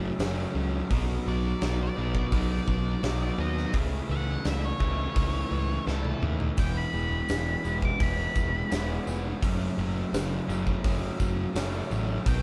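A driving, sunny classic rock passage at 85 BPM opens on two crunchy overdriven guitars riffing in the background, one bright and one warm, over an up-front fuzzed electric bass, joined at once by a big acoustic drum kit with a fat snare and punchy kick in a pumping room; a dark octave-fuzz lead guitar enters at 1.3 seconds to solo over a progression moving from F#m through B, A/C# and E back to F#m, and after a drum fill at 5.9 seconds a jingly tambourine slips in quietly at 6.6 seconds, all captured as a band playing live together in one room with moderate reverb.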